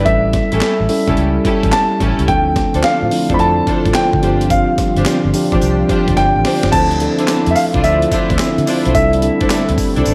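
Confident and slick, this excerpt of new jack swing R&B rides a swung sixteenth-note groove, with a baby grand piano carrying the melody in an open, long-sustaining tone over mellow tine electric piano chords, both touched with slapback echo. A gritty, pitched-up breakbeat kit with a thumpy kick, handclaps and tambourine drives alongside a dark, foam-muted fingered bass, while lush symphonic strings with vibrato and portamento punctuate from 0.5 seconds and a shimmering chorused pulse-width pad fades in behind at 2.3 seconds. A drum fill at 6.2 seconds leads into a new section moving from Dm9 to C69, all set in a hall reverb that gives it a big arena sound.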